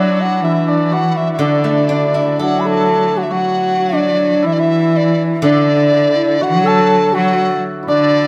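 A mellow, hollow large dizi with a buzzing membrane leads this pastoral, festive Chinese chamber excerpt at a rubato 60 BPM in D gong mode, alongside a focused bowed cello, a shimmering hammered dulcimer and a silvery fingerpicked steel-string zither, with an airy low xiao entering at 2.4 seconds, all in a moderate recital hall reverb.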